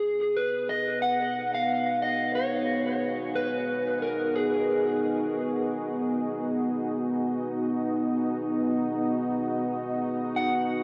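An electric slide guitar, dark and slightly broken-up, carries the melody with a dub echo, sounding from the start until 4.8 seconds and returning briefly at 10.4 seconds. Beneath it, a deep, moody pad built from detuned sawtooth and sine layers with a sub octave holds sustained chords on G#m7 from 0.5 seconds, softened by chorus and slow attack. This hazy, spacious ambient fragment in G# minor at 90 BPM with a light swing is soaked in a huge reverb that gives it a dreamy atmosphere.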